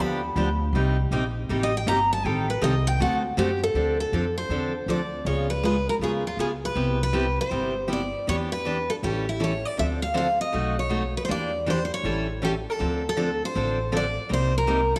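A swinging 4/4 pulse at 159 BPM drives this fiery excerpt of acoustic string swing in the jazz manouche style, cut from a longer piece. A picked steel-string dreadnought guitar carries the melody up front with a bright tone, fresh strings and audible finger squeak, taking a solo over the opening 3.7 seconds before the harmony moves into a new section. Beneath it, a second picked steel-string guitar, a full-bodied jumbo, supplies the accompaniment, while a pizzicato upright bass adds a woody, thumpy low end. The chords travel from G7 and Cm7 through Am7b5 and D7, then on to Dm7, C#9, Cmaj7 and a chain of dominant turns before settling on Cm7 near 14.3 seconds. A moderate plate reverb gives the small ensemble a lively sense of space around the strings.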